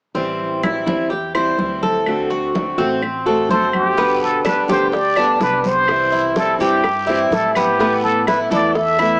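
Cuban son and guajira at 126 BPM in G major, danceable and relaxed, this excerpt opens with a boxy picked acoustic guitar, metallic double-strung tres arpeggios and a thumpy gut-string upright bass over ringing congas and woody claves, then a breathy plunger-muted trumpet takes an up-front jazz-style wah-wah solo from 3.5 seconds as tight high bongos and a raspy, band-limited guiro join at 4.0 seconds, all set in moderate plate reverb with a small-speaker sound.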